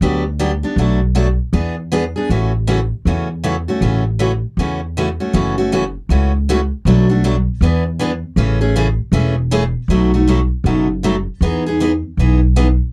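From the first moment, a picked steel-string acoustic guitar and a pizzicato upright bass start together in a lively, playful passage of acoustic string swing in the jazz manouche style, cut from a longer piece. The tempo sits at 158 BPM in 4/4 with a swung eighth-note feel, in A major. The guitar carries the accompaniment with a bright, fresh-stringed auditorium tone, while the bass holds the low end with a woody, thumpy sound, both placed up front. The harmony opens on Gmaj7, Bm7, E7 and A6, then shifts at 5.3 seconds into a new passage moving through F#m7, Bm7, E7 and Amaj7 before settling on B7 and Emaj7. The dry, close sound of a 1970s-style studio keeps both instruments intimate and immediate until they stop just before 13 seconds.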